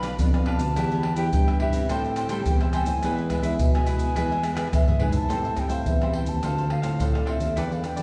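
Lively yet bittersweet, this short cut from a longer samba and choro piece moves at 106 BPM in a straight 4/4 feel in A minor. A baroque flute carries the melody with an airy, woody tone, tongued notes and expressive vibrato, sitting distant in the mix. A mellow, crisp picked cavaquinho and a bright, fingerpicked classical nylon-string guitar fill out the accompaniment, while a barky, clean tine electric piano plays the bass line with a direct edge. Maracas, pandeiro, tamborim and a tight surdo sit up front with hard hands and a live-room feel, and a drum fill from 4.6 to 5.3 seconds leads into a new section. The harmony moves from Bdim through Em, Am7 and E before settling on Am7 and Dm7, all bathed in the wet reverb of a recital hall.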